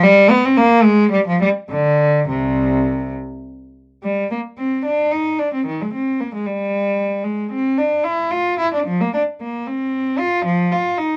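In a 6/8 with a free, rubato pulse, this grave and solemn baroque-style suite movement for unaccompanied cello unfolds in two passes of the same opening theme, cut from a longer piece. A single bowed cello sits up front with a rich, reedy gut-string tone in period style, ranging from deep low notes to its middle register. Light reverb surrounds it, and the sound carries the worn character of old cassette tape, with a warbling drift in pitch.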